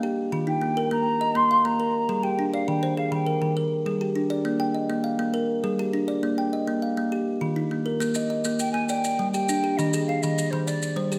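A wet recital-hall reverb surrounds this short, hypnotic cut from a longer southern African traditional piece, built on an mbira-style interlocking cycle in 12/8 at 135 BPM, felt in dotted quarters with a straight feel in Bb mixolydian. Up front, a woody, bright kalimba rings out with thumbnail-plucked arpeggios across the whole passage, spanning Eb3 to G5 with a solid-board resonance. A distant, hollow silver concert flute carries the melody from 0.5 seconds, its pure tone marked by vibrato, crisp attacks and a tape echo, then pauses and returns near the close. At 8.0 seconds, grainy maracas join close by, sitting low beneath the other parts. The harmony circles through Eb, Gm and Bb before moving to a Bbsus4 and G5, keeping the mood warm and trance-like as the cycle repeats.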